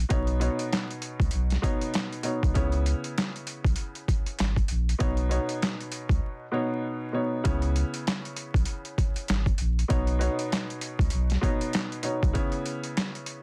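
Gritty, overdriven sampler-style drums sit up front in this reflective yet tough boom-bap hip-hop cut, pitched down and compressed, with a thumpy kick, medium-tuned snare, handclaps and hi-hat swinging on the sixteenths. A deep, round dub sub bass holds the low end until 12.3 seconds, while a vintage grand piano, filtered through cassette-tape colour with short sustain, moves between Badd9 and C#m7 chords. The dry, densely limited mix carries a vinyl crackle, and breaks at 6.2 and 12.4 seconds punctuate this fragment of a longer piece.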